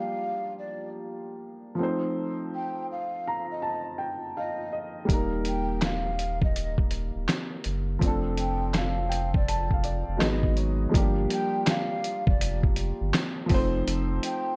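A muffled, pitched-down sampler-style drum kit sits up front in this nostalgic, hazy lo-fi hip hop excerpt, its thumpy kick, medium-tuned snare, hi-hat and handclaps compressed and re-recorded in a large room, with a swung 16th-note feel. From the start, a dark upright piano carries the accompaniment with a woody, slightly detuned, vintage character, its action noise audible and its tone softened by cassette tape and a low-pass filter. Alongside it, a breathy jazz flute plays the melody from a distance, hollow and metallic, with vibrato and tongued notes, also filtered. The drums and a thick, saturated sub bass with a fast attack and sustained triangle tone both enter at 5.1 seconds. The harmony moves through minor-seventh and dominant-seventh chords before a brief second section at 10.9 seconds returns to the opening chord, all wrapped in light reverb and a dark production.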